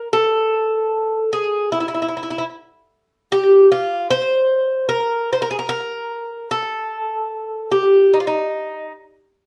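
Passionate and longing, this brief fado passage, cut from a longer piece, moves with a rubato feel around 75 BPM in 4/4. A solo Irish bouzouki carries it alone from 0.0 to 8.9 seconds, its picked double strings sounding metallic and up front within a range of Eb4 to C5, with a slapback echo trailing each note. Moderate studio reverb surrounds the playing, and the worn, warbling quality of old cassette tape adds a warbly pitch drift to the whole recording.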